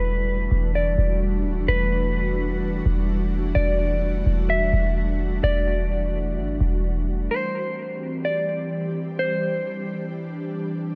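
A half-time 4/4 pulse at 128 BPM drives this atmospheric cloud-rap cut from a longer piece, set in E minor with an ethereal, melancholic mood. A deep, boomy 808-style bass with a fast attack sits up front beneath an airy, detuned pad of sustained chords with a slow attack, long release, ensemble chorus and built-in reverb, while a mellow, dark electric guitar carries the melody through a low-pass filter and delay. The harmony moves from Em11 to C at 7.3 seconds, where the bass stops, and the guitar ends at 10.1 seconds, leaving the pad to close inside a light reverb and digital ambience.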